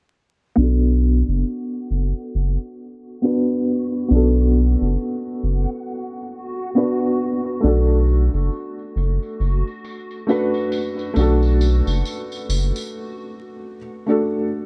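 A felt-muted upright piano and a round analog bass open this swung trip hop excerpt at 0.6 s. The piano's soft, boxy chords sit up front, colored by tremolo, tape echo and a filter sweep that runs through its whole part. Beneath it the bass sits deep and dark, with a fast attack and sustained notes. A reversed, swelling texture drifts in far back in the mix, dreamy and detuned with a granular grain and its own reverb. At 7.6 s a tambourine joins quietly, while small-room ambience, vinyl crackle and a muffling filter color the recording. By 12.9 s the other parts have dropped away, leaving the piano alone through a short break that holds the brooding, hypnotic mood over a Bm7 chord.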